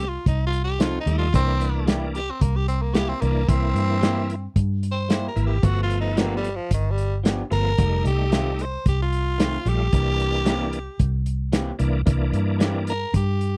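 Dry, close and up front, this recording has the intimate feel of a 1970s soul studio session, cut from a longer piece of laid-back, rollicking straight-eighth soul blues. A raspy, growling tenor saxophone carries the melody as a solo throughout, its jazz-style vibrato sitting bright and present over the band. Beneath it, a shouting tonewheel organ spins through a slow rotary speaker with chorus vibrato, while a twangy electric guitar through a small old amp adds slightly broken-up picked stabs from 0.8 seconds. A dark, foam-muted fingered bass keeps a round, amped bottom end, and a muffled, lo-fi drum kit with a tight kick, medium-tuned snare and hi-hat sits forward with a rolled-off top. The harmony moves from F7 to C7, G7 and back through F7 to C7.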